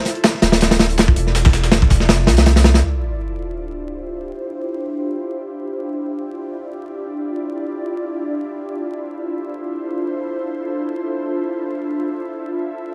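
Drum and bass with a jungle edge, this dark, nostalgic fragment in D minor floats in free time, opening on a brief drop where a crunchy, saturated breakbeat kit sits up front with a tight kick and a medium-tuned snare. A quieter, dusty sampler-style kit with high-passed snare and hats plays in the background, while a thick, deep sine sub bass enters up front at 0.4 seconds; both kits and the bass stop at 2.8 seconds. An electronic sub drop marks that moment, while the ethereal, detuned pad, sustaining Dm9 from the start with slow attack and long release, moves to Dm11 and drifts under a filter sweep, all wrapped in vinyl crackle and small-room ambience.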